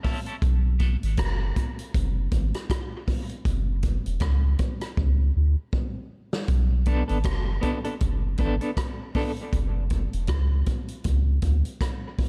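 Meditative and spacious, this dub reggae excerpt in B dorian moves at 79 BPM with a swung sixteenth feel, built on an up-front vintage acoustic drum kit whose punchy kick, medium-tuned snare, rim clicks and hi-hat roll into a fill at 5.0 seconds, a deep, round, soft sub bass with a fast attack and sustained notes, and a dark, slightly broken-up picked electric guitar that appears briefly at the start and returns at 6.9 seconds, its tremolo, high-pass filter and dub echo sitting over B5, F#5 and Bm7 chords in a dusky studio reverb.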